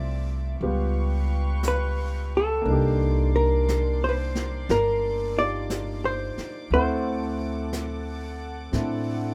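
A slow swung ballad feel in four, with a jazz brush kit joining at 0.6 s on brushed snare and hi-hat, sets a romantic, late-night mood in this short excerpt from a longer piece. An upright bass sits up front, its pizzicato tone woody and low, while a baby grand piano supplies polished, present accompaniment with long sustain. Softly bowed symphonic strings play sul tasto underneath, pure and floating with a smooth top and gentle attack. Out front, a clean hollow-body electric guitar carries the melody with a dark, compressed, fingered tone before dropping out at 8.7 s. The harmony drifts from Dm9 through C#7#11 and Cm9 to D7, and the close, dry studio sound keeps every part intimate and near.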